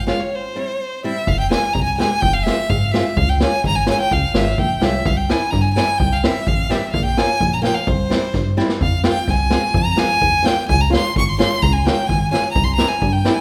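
Klezmer at 127 BPM in 2/4 with a bittersweet, festive mood, led by a clear, close violin singing with vibrato up front over a punchy, wave-folded analog bass, a fingerpicked flamenco guitar with audible finger squeak, and a street-band drum kit of boomy kick and medium-tuned snare, moving through Fm, Db, C and Bbm after a break at 0.3 seconds and a drum fill at 8.3 seconds, all set in a moderate recital-hall reverb.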